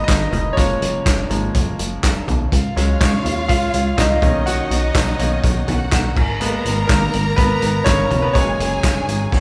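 A bright grand piano leads this short excerpt of piano-driven pop, sitting up front with a brilliant, intimate tone, long sustain and audible action noise as it carries the accompaniment from Eb3 to Gb5. Set at 123 BPM in 4/4 with a light swing on the 16ths, the mood is hopeful, moving through Abmadd9, Gbmaj7, Dbsus4 and Cbmaj7 before resolving toward Gb. A plucky analog bass with a punchy, funky, wave-folded attack anchors the low end, while a loose indie drum kit, gritty and saturated with a punchy kick and rolled-off top, drives the groove with hi-hat, snare, toms, handclaps and crash cymbal, the loudest part in the mix. A very quiet, jingly tambourine sits beneath, and at 2.5 seconds a rich, lush violin section enters with expressive vibrato as a second line. The band sounds as if playing live together in one room, wrapped in a moderate large studio reverb.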